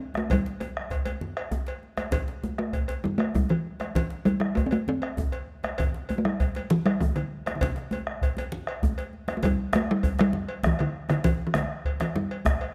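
A 12/8 pulse, counted in dotted quarters with a straight feel, drives this short, festive fragment of West African drum ensemble music, cut from a longer piece. The resonant talking drum carries the melody, sitting close, dry and up front as the most prominent voice. A round bombo also sits forward in the mix, while the djembe adds a deep tone laced with metal rattles and the congas bring a thick-skinned, medium-tuned body. A metallic cowbell rides quieter beneath them all. The ensemble plays together throughout, and the passage shifts into a new section at 9.4 seconds, carried by close, detailed microphones and a light touch of reverb.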